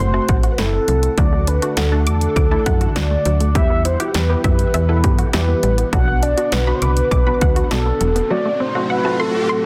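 Synth-pop in E minor at 101 BPM, this cool, driving fragment of a longer piece sets a round, warbling horn-like synth lead with chorus, vibrato and digital delay over a funky, detuned polysynth comp, a dark vintage string machine of cellos bathed in phaser and ensemble chorus, and a lush unison pluck playing delayed arpeggios in the background. Up front, a snappy FM bass with a metallic attack and a dry, punchy analog drum machine, entering at 0.3 seconds, drive the chords from F#dim through D, Emadd9 and Bm. An electronic riser enters at 7.7 seconds, shortly before the bass and drums stop, all within light digital ambience and a dense, heavily limited modern master.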